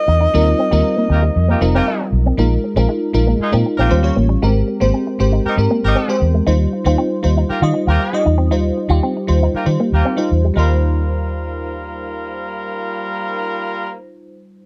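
This dry, close recording has a 1970s studio character and little reverb, giving this short fragment of a longer pop piece a glossy, breezy feel in a straight 4/4. A breathy alto saxophone opens with a whispered, intimate jazz-style phrase carrying vibrato and a tape echo, and it falls away by 1.9 seconds, while the band lands an accent in those first moments. A bell-like FM electric piano, sparkling and treated with analog chorus, carries the accompaniment throughout over a round, foam-muted fingered electric bass that sits dark and up front. A mellow horn section enters at 1.1 seconds with a second line in octave doubling and light vibrato. A clean, twangy electric guitar plays a riff through an envelope filter and subtle chorus until 10.7 seconds, as the harmony moves through lush chords such as Eb69, Bb7sus4 and Abmaj9.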